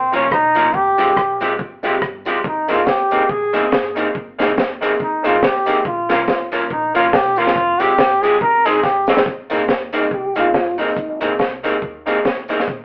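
Joyful, cheerful ska with a swung eighth-note feel, cut from a longer piece, opens on a bright, punchy trombone solo with vibrato that carries the melody up front until a drum fill at 8.8 seconds hands off to a short passage where a lightly overdriven tonewheel organ with key click and slow rotary speaker takes the line from 9.9 seconds. Underneath, a deep reggae drum kit with a high-tuned snare, tight kick and rim click sits dry and dark up front with vintage 12-bit sampler grit, while a woody, thumpy pizzicato upright bass stays in the background. A slightly broken-up picked electric guitar, mellow, slightly detuned upright piano stabs and a very quiet jingly tambourine fill out a live-in-one-room sound colored by wet studio reverb, cassette tape and a telephone-like filter.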